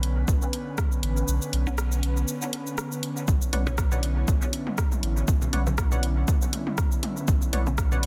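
A punchy, overdriven electronic kick sits up front in this meditative, hypnotic dub techno excerpt at 120 BPM in B minor, dropping out between 1.3 and 3.3 seconds while a round sine sub bass and an airy, breathy pad with chorus hold a Bmadd9 chord under sidechain pumping. Dark hats, rim clicks and shaker from a deep house kit carry dub echo and a swung sixteenth feel, and a muted, resonant dub chord stab under a filter sweep and phaser murmurs in the background from 1.7 seconds. At 3.5 seconds a crisp, full-bodied wavetable stab riff enters alongside overdriven electronic toms and congas, all wrapped in digital ambience and a dense, heavily limited master.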